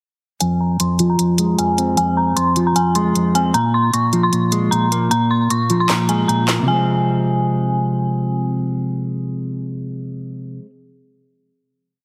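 At 0.4 seconds a dark, melancholic trap piece in F minor opens with everything at once: a clean, fingered electric guitar playing a looping pedal-note arpeggio in eighths, an eerie, detuned FM synth bell with an inharmonic ring, and an electronic trap kit. At 153 BPM in a half-time feel, the drums lay down a crisp, tape-tinged beat with a sharp snare layered with handclaps under ticking hi-hats. Sitting up front, the guitar moves through low, dark registers, while the bell repeats its high melody like a sampled loop, its fast attack fading into a long, chorused decay with digital delay. A filter sweep runs through the opening breakdown as the harmony shifts from F minor to Bb5 and back. The drums drop out at 6.6 seconds, the bell soon after, leaving the guitar to hold the final F minor chord until 10.7 seconds. The whole mix has a squeezed, heavily compressed radio character with a light touch of reverb.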